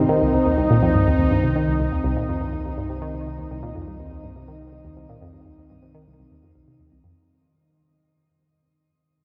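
Ambient, sequencer-driven space music in C minor at 123 BPM, this short expansive and mysterious passage sits on a single C minor chord and fades out across its full 7.2 seconds. Up front, an evolving, ring-modulated resonant pad holds sustained chords through chorus and shimmer reverb, while a nasal, detuned analog pluck with a noise layer repeats a riff under a filter sweep, chorus, phaser and delay. A deep, round analog bass sits on a low C beneath them, and the dark production is bathed in a huge, wet reverb with a long tail.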